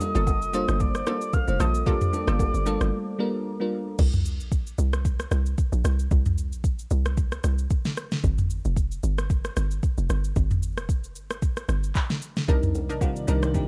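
A hollow, bouncy log drum bass sits up front from 0.2 s, its mellow, percussive notes carrying this hypnotic, soulful amapiano excerpt at 113 BPM with a swung sixteenth-note feel. A smooth electronic R&B drum kit runs throughout, pairing a soft kick and fat snare with handclaps, rim clicks, shaker, toms and crash cymbal. The opening drop over Gm9 layers a soft, octave-layered synth lead with a round, vibrato-tinged tone and analog delay, a sparkling bell-like FM electric piano treated with chorus and phaser, warbling vintage analog pluck stabs, and very quiet ringing bongos and congas. After a short break from 2.9 s, the groove moves through Bbsus2 and Fsus2 with the drums and bass alone. Near the close the piano, plucks and hand percussion return over Cm9, joined at 12.9 s by a glassy, ethereal FM pad with slow attack and a long release. The production is dark, with a digital ambience and a faint mains hum beneath it.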